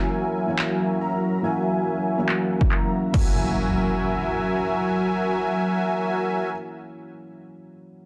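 The sound is dense and heavily limited, with light reverb and a digital ambience wrapping a bittersweet, lush future bass fragment in a half-time feel, opening on an F#7 chord. Up front, a big, bright, fat sawtooth polysynth carries the riff, its detuned, nasal tone colored by a subtle chorus, a moving notch, sidechain pumping, tape echo and a filter sweep through the first three seconds. Beneath it, an airy, breathy pad holds very quiet sustained chords with a slow attack, and a felt-muted upright piano adds mellow, intimate accompaniment, its audible action noise and vintage darkness carried by its own pumping and tape echo. An electronic trap kit with a crash cymbal and handclaps sits in a small room behind low-pass filters and a filter sweep, joined at 2.6 seconds by a punchy, overdriven, layered kick. An electronic impact arrives at 3.3 seconds, and after the synth and pad stop at 6.5 seconds the soft piano carries on alone until the fragment ends.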